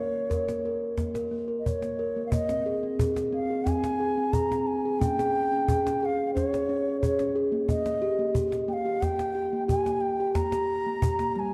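Meditative and hypnotic, this world-music piece for tuned percussion moves at 90 BPM in a straight 4/4 and is cut from a longer work. A steel tongue drum carries the arpeggios from start to finish, its round, pure, ringing tone struck with firm rubber mallets and heard close and up front. Above it a mellow bansuri sings the melody between Db5 and Bb5, airy and bamboo-toned with a soft attack and vibrato, trailed by a delay. A cajon played with soft hands enters at 0.3 seconds and holds the pulse until 11.3 seconds, snappy with its snares. The harmony opens on Bb minor, then from 2.3 seconds moves through chords over a held Bb, ending on a rootless Eb over Bb. A dark production sits in a recital-hall reverb that gives the whole a spacious glow.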